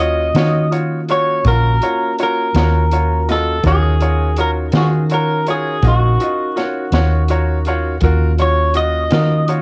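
A twangy, slightly broken-up electric guitar sits up front carrying the melody in this smoky, brooding slow blues in Eb minor, a short excerpt from a longer piece moving at 55 BPM in a straight 12/8. Beneath it, a dark, round, foam-muted fingered electric bass is the loudest part in the mix, anchoring a single Ebm9 chord. A bright, woody upright piano with short sustain plays accompaniment and adds a fill from 6.9 to 8.0 seconds, while a soft, flute-like tonewheel organ holds sustained chords through a slow rotary speaker. A vintage drum kit enters at 0.3 seconds with hi-hat, punchy kick and a medium-tuned snare, its top rolled off in a small-room sound. The dry home recording on cassette lends the piano, organ and drums a tape-worn, intimate character.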